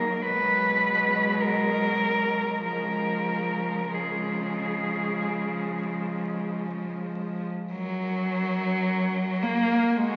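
Tender and warm, this short passage cut from a longer classical work brings together four bowed cellos in a lyrical, rubato ensemble at roughly 46-55 BPM in 4/4, in F# major. Up front, the lead cello carries the melody between F#4 and B4 with a rich, expressive tone full of vibrato and portamento, while a more distant cello shapes a second line beneath it with the same vibrato and gliding portamento. Close by, a third cello plays the accompaniment with light vibrato, soft attacks and an airy, intimate bow, and a far-off bass cello anchors the low register from D2 to C#3 with its own vibrato and sliding phrasing. The harmony moves from G#m7/B to C# before settling on F# at 7.7 s, where a new section begins. A concert hall's lingering reverb surrounds the ensemble, and the crackle of a very old 78 rpm record lends the sound an aged patina.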